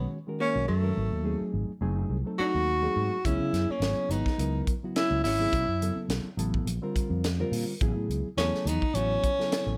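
Intense and driving, this electric jazz fusion passage in G# minor moves at 105 BPM with a light sixteenth-note swing. A warm, up-front tenor saxophone carries the melody with light vibrato, scooped notes and a slapback echo. Beneath it, a growly, punchy fretless bass holds down the bass line, a bright, reedy electric piano through a phaser provides accompaniment, and a dark, clean hollow-body archtop guitar sitting in the background plays a second line, all over chords such as Bmaj9, C#m9 and Amaj7. A tight funk kit with a high-tuned snare enters at 3.2 seconds in a light reverb, in a short section cut from a longer piece.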